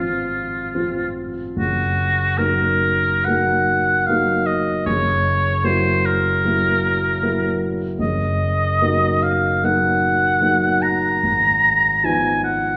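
Elegiac and yearning, this romantic classical duo moves with a loose, rubato pulse as a clear, vibrato-laden oboe sings the melody up front, its tone carrying a vintage tint. Beneath it, a warm grand piano supplies the accompaniment with long, present sustain, both instruments playing throughout this short fragment cut from a longer piece. A wet recital-hall reverb surrounds the pair, lending the sound of a church or concert hall as the harmony settles into E-flat minor from 8.0 seconds.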